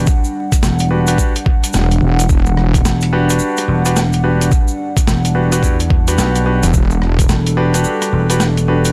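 Glitch hop at 108 BPM in E minor with a swung, swaggering and funky feel, this short cut rests on a single Em7 chord, with a moody, detuned analog pad carrying chorus, phaser and 12-bit sampler grit under clear concert grand piano stabs that pump with the sidechain and trail tape echo. A growly, amped slap bass sits up front with tube saturation beside a thumpy, overdriven kick, while a gritty boom bap kit of hi-hat, rim click and medium-tuned snare enters at 0.5 seconds to join a grainy, close cabasa already playing. A heavy, saturated wobble bass bursts in on a low E between 1.7 and 2.8 seconds and again near the end, all wrapped in dry hardware grit and vinyl crackle.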